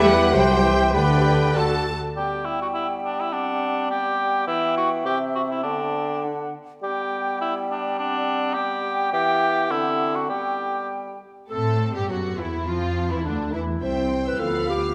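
Lively and spirited, this quick classical-period orchestral excerpt in 2/4 at 103 BPM opens in G major with the full ensemble: lush, distant violins carrying the melody over a very quiet second violin line, dark violas and cellos in the background, tight French horns holding chords, and focused double basses underneath, before the strings and horns drop out by 2.0 seconds to leave an up-front cor anglais, a pure flute, a roomy clarinet and a clear bassoon singing their lines through the middle, until the strings and horns return at 11.5 seconds as the music turns to A minor, all set in the generous reverb of a scoring stage.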